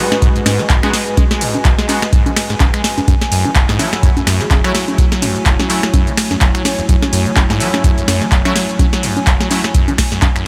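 Driving acid house at 126 BPM in 4/4, swung at 57% on the sixteenths, with a deep, tape-warm electronic kick up front and a booming analog drum machine laying congas, finger snaps, handclaps, metallic hi-hats, ride cymbal, shaker and a tonal snare, the snare, clap and hats set in a short room. A squelchy, resonant sawtooth acid bass riff carries the raw energy, its filter sweeping and its notes biting fast and decaying, thickened by tube saturation and an analog delay. Above it, a dark, moody analog pad holds sustained, detuned chords with a sub octave and ring modulation, pumping against the kick through sidechain and chorus, while a warbling, nostalgic lo-fi pad floats higher with a mellow, wave-folded haze, its own reverb and the same pumping. A nasal, band-passed sawtooth chord stab adds bright plucked hits with 12-bit sampler grit and delay until 9.6 seconds, and a very quiet, ringing vibraphone note with slow motor vibrato surfaces briefly at 4.4 seconds. 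The harmony moves from G#m7 to F#m7 at 3.1 seconds in this cut from a longer piece, all under light reverb.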